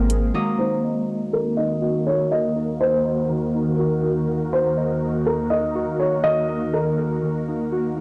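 Hip hop in Eb dorian at 122 BPM with a half-time feel, this spacious, melancholic excerpt rests on an Ebm chord under a filter sweep that begins at 0.3 s. An ethereal, airy pad holds sustained chords up front, while warbling, dark lo-fi synth keys spin arpeggios through tape echo and a crisp, ringing fingerpicked kora adds texture. A soft felt-muted upright piano carries an intimate melody from 0.6 to 7.2 s, and the whole mix sits in a moderate digital room with a blown-out, overdriven sound.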